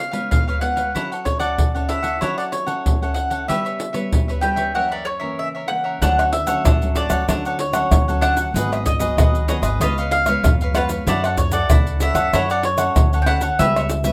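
A round, double-strung mandolin carries the melody over dark, thumb-plucked nylon-string guitar from the first moment, joined almost at once by crisp cavaquinho bathed in plate reverb and an up-front small-room percussion kit of pandeiro, tight surdo, tube shaker and tamborim in this lively, festive samba and choro excerpt at 95 BPM in straight 4/4. After a break from 4.8 to 6.0 seconds, the harmony turns from F#m7 and C#m7b5 toward Dmaj7 as a woody, thumpy pizzicato upright bass enters at 6.0 seconds. The rough home-demo mix sits in moderate studio reverb, with the percussion loudest and the guitar furthest back.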